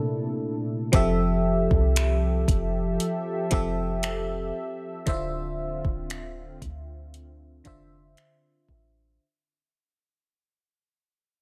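A glassy, bell-like FM electric piano with chorus sits up front in this dreamy, romantic contemporary R&B excerpt at 58 BPM in F major. It opens on a C13 chord over a detuned sawtooth analog pad carrying chorus, tremolo and sidechain pumping. At 0.9 s a round, sine-toned 808-style bass and a soft electronic drum kit of finger snaps, metallic hi-hat and kick enter as the harmony settles on Fmaj9 and moves to Dm9 at 5.1 s, while light reverb surrounds the parts and the passage fades out.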